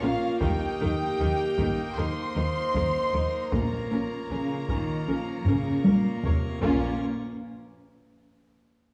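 Bathed in a wet scoring-stage reverb, this cinematic, epic orchestral film-score fragment, cut from a longer piece, sounds dramatic and heroic at a steady 77 BPM in 4/4, set in B-flat dorian. Lush, bowed violins carry a smooth, vibrato-rich melody, while a second, more distant violin line and a focused viola section sit in the background beneath it. Mellow French horns and a brilliant, majestic full pipe organ hold sustained chords that move from Eb to B-flat minor, grounded by close, focused cellos and a background double bass section on the bass. Heavy-stick taiko drums enter at 0.4 seconds with a compressed, saturated punch and the most forward presence in the mix, adding a drum fill from 5.5 seconds. Round, soft-mallet timpani join at 3.5 seconds on a low B-flat, sitting dry and close in the background.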